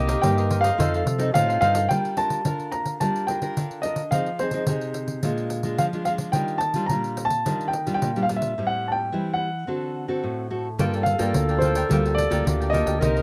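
A piano carries the melody over fingerpicked nylon-string guitar, clarinet, a punchy envelope-filtered electric bass, crisp cavaquinho and a jingly, dry pandeiro, opening this bittersweet, lively samba and choro piece in G minor at 108 BPM. At 1.9 seconds the clarinet, bass and cavaquinho drop away, leaving the intimate piano, with its audible key action, to sing over the bright, full-bodied guitar, which has a touch of finger squeak, and the pandeiro, with a break arriving at 8.6 seconds. At 10.8 seconds the vintage-toned clarinet, bass and cavaquinho return, all in light reverb.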